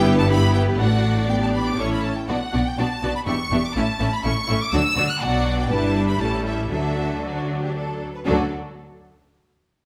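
Spirited and lively, this quick classical-period movement for string orchestra moves in a straight 3/4 at around 114-125 BPM in D major, cut from a longer piece. A violin section carries the melody high above the staff with a smooth, even, warm tone, while a second violin section sings a distant, intense second line beneath it. The violas fill in the accompaniment with a clear, intense vibrato, and the cellos and double basses share the bass, the cellos rich with a smooth top and the basses sounding even and remote with light vibrato. The harmony turns through a cadential progression that settles on D at 6.7 s, and all five sections play together until 8.5 s, just after a new section begins at 8.3 s. A moderate recital hall reverb gives the ensemble a lush, spacious bloom.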